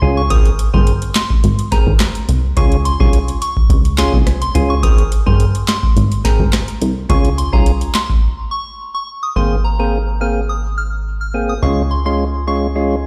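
Dancehall at 106 BPM in Ab major, summery and bouncy, with a punchy, funky analog bass and a fat, lightly overdriven tonewheel organ with percussive third-harmonic attack moving between Abadd9 and Db chords beneath a soft, pure FM bell melody coloured by chorus, phaser and delay. A booming, overdriven analog drum machine sits up front with a deep kick, crisp snare, handclaps, rim click and metallic hats until 8.3 seconds, leaving a short break before the closing section at 9.4 seconds. The sound is that of a big sound system in a bare room, and the clip is cut from a longer piece.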